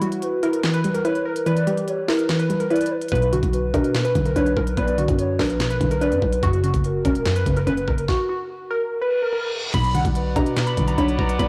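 An eerie, hard-hitting half-time trap excerpt at 145 BPM in B harmonic minor opens on glassy, wave-folded digital keys carrying the up-front melody with chorus and tape echo over a soft, round, warbling pluck, knocking trap drums with crisp hats and sharp snare, and a smooth gliding portamento lead from 0.2 seconds, before a growling, buzzy 808 bass drops in at 3.1 seconds, a reverse cymbal rises out of a stop, and a muted, nasal French horn section joins with sustained Bm chords at 9.7 seconds, all in a blown-out, overdriven mix with light reverb.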